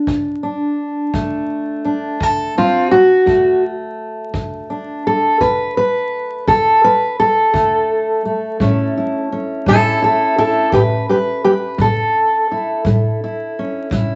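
Vinyl crackle and a dulled top end give this short clip cut from a longer piece a gritty, aged sound, with a wet studio reverb around the players. It's laid-back acoustic country blues at 56 BPM in 12/8, where a fingerpicked steel-string acoustic guitar carries the melody up front with fresh-string bite, audible finger squeak and an auditorium-like body, moving from a D5 chord to A at 8.6 seconds. Underneath, a tight, natural kick drum played with brushes sits low in a studio room sound.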